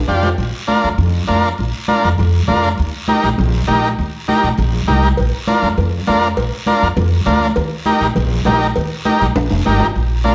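A sunny, festive cumbia in Bb major at 201 BPM opens with a short drum fill over woody, thumpy pizzicato upright bass. A buzzy vintage combo organ with heavy vibrato sits up front on Bb and Eb chords, while raspy guiro and high-tuned, hard-handed congas fill out the percussion. Ringing, close, dry timbales and cowbell return at 5.2 s and play on into a second fill from 9.4 s, all heard from further back in a large studio with moderate reverb, in a passage cut from a longer piece.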